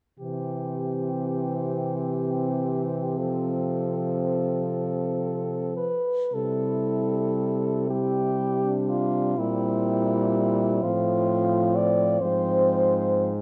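Serene and lyrical, this passage for horn quartet, cut from a longer piece, unfolds slowly in C major at a rubato 34-45 BPM in 6/8. A clear French horn with light vibrato carries the melody up front, a warm second horn sits in the background, and two mellow horns supply the accompaniment and bass, the accompanying one soft in attack, lightly vibrato-tinged and distant and roomy. The four horns play from 0.2 s to about 13.4 s within a moderate concert hall reverb and a dark production, the harmony moving from C through F/C and C7/Bb to a closing Fm/Ab.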